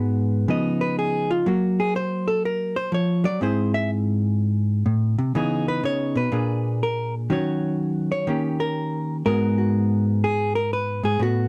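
Swung eighths at 123 BPM in 4/4 carry this moody, late-night solo jazz fragment, where a clean, compressed, picked electric hollow-body guitar sits up front by itself for the full 11.5 seconds, spanning G#2 to E5 through chords such as C#9, F#maj7, C#m9 and D#m7 before shifting into a new section at 9.2 seconds on G#m9, set in light reverb and a dark production.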